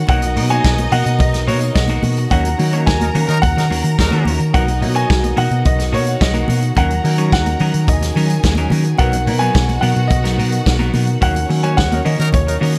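Disco at 108 BPM in B major, celebratory and joyful, cut from a longer piece that alternates between Bmaj7 and D#m7, with a clear baby grand piano carrying the melody over a dark, round hollow-body short-scale bass and a warm, up-front vintage drum kit of punchy kick, snare and hi-hat, joined by bright, high-tuned congas. A slightly broken-up picked electric guitar with spring reverb and a stringy clav through a phaser fill in the accompaniment, while a clear, focused string section with tape echo plays a second line and a mellow French horn section holds sustained chords in the background. A tight pop-style horn section punches in with stabs at 3.0 and 11.9 seconds, the band accenting together around those moments, all in a dry room with little reverb.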